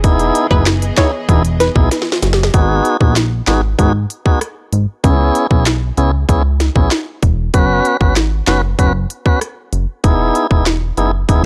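Dancehall at 96 BPM in G# minor, this bouncy, hypnotic excerpt rides an up-front, overdriven electronic drum kit with tight kick, sharp snare, handclaps, rim clicks and smooth hats, alongside a punchy, funky analog bass with a filter pluck and ring-modulated edge. A lightly overdriven tonewheel organ with key click and vibrato carries the accompaniment, while lush bowed strings pump softly in the background and a round, chorused analog pluck with tape echo adds a brief melody before stopping at 1.7 seconds. The strings drop out after a drum fill from 1.9 to 2.5 seconds as the chords move from Emaj7 through G#m7, C#m7 and F#sus4, all captured in a dry, gritty recording with transformer saturation.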